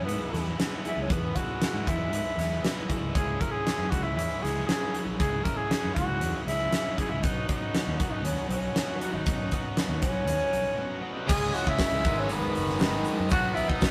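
A breathy, raspy tenor saxophone carries the melody over a biting, double-tracked overdriven guitar riff, round fingered bass, a faint acoustic guitar and a huge arena drum kit with a fat snare and punchy kick in this gritty, driving classic rock excerpt in C# minor at 118 BPM. A quiet, shouting tonewheel organ slips in at 11 seconds during a brief break that begins at 10.8 seconds, and at 11.3 seconds a second overdriven riff, a dark octave-fuzz lead line with slapback echo and a grainy shaker join, all in a rough rehearsal-room sound with light reverb.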